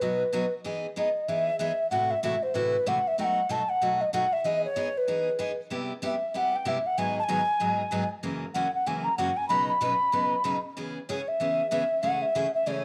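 A breathy, clay-toned alto ocarina with tongued notes and vibrato carries the melody over a full-bodied, picked steel-string acoustic guitar from the first moment, in a down-home, swinging country fragment at 190 BPM in E major, with chords moving from Emaj7 through Am6, Cmaj7 and F#7 to end on Amaj7/C#, all set in a moderate echo-chamber reverb with a small-room ambience.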